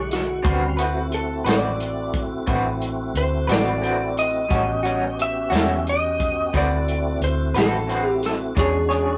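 Slow blues in 12/8 at 59 BPM with a gritty, swaggering mood, cut from a longer piece, where a dark, slightly broken-up slide guitar sings the melody over full tonewheel organ chords with chorus vibrato and slow rotary speaker, a round, foam-muted fingered bass, a punchy up-front vintage drum kit with a rolled-off top, and a lo-fi tremolo rhythm guitar through a small old amp entering at 0.4 seconds, moving through D13, A13 and E13 chords in a rough rehearsal-room recording with light reverb.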